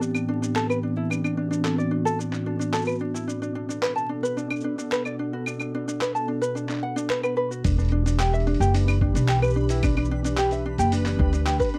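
A mellow, fingerpicked ukulele sits up front, spinning light arpeggios through a tape echo in this wistful, autumnal folktronica excerpt in a straight 4/4. Beneath it, a warbling, detuned pad built from square and triangle waves holds dark, nostalgic sustained chords, with chorus and its own reverb, while a filter sweep moves across it until 7.6 seconds. A muffled, pitched-down sampler-style kit of claves, handclaps, hi-hat and shaker plays quietly from the start, sounding re-recorded in a small room. At 7.6 seconds a woody pizzicato upright bass and a compressed, thumpy electronic kick join as the harmony moves from Am11 and Bm7 to Em9, and from 8.8 seconds a reversed, granular, dreamy texture swells faintly in the background. The recording has a dry, close 1970s-style studio character, with light reverb and a bed of vinyl crackle.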